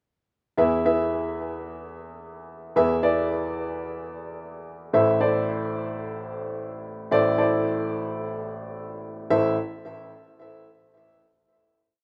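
This short pop piece is a complete miniature in free time, set in A harmonic minor with the tuning a touch under standard at A4 = 439 Hz, and its mood is bittersweet yet driving. A warm baby grand piano plays solo from 0.6 to 9.6 seconds, spanning A1 to E5 with a natural, up-front tone and close-voiced chords played in a pushed rhythm. A digital delay on the piano adds an echo, while light reverb and a small-room ambience frame it like a rough home demo. The chorus runs from 0.6 to 9.3 seconds, moving from an E chord to A minor at 4.9 seconds. A final chord then rings out until the piece closes at 11.5 seconds.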